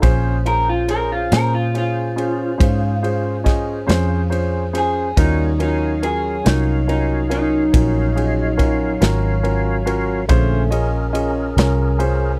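The sound is dry and close, a 1970s-style studio recording with little reverb. This smoky, soulful slow blues in B-flat minor moves at 47 BPM in a straight 12/8, and it is cut from a longer piece. The natural country drum kit sits up front, with an airy, polished kick, snare and ride, a punchy kick and a medium-tuned snare. Beside it, the vintage muted fingered electric bass is round, dark and foam-muted. A tonewheel organ holds fat, lightly overdriven chords with key click, chorus vibrato and a slow rotary speaker, while a warm grand piano adds accompaniment. From 0.5 to 9.8 seconds, an electric guitar through a small old amp plays a slightly broken-up, lo-fi picked solo colored by phaser, over a Bbm7 that moves to Ebm7 at 5.2 seconds before returning to Bbm7.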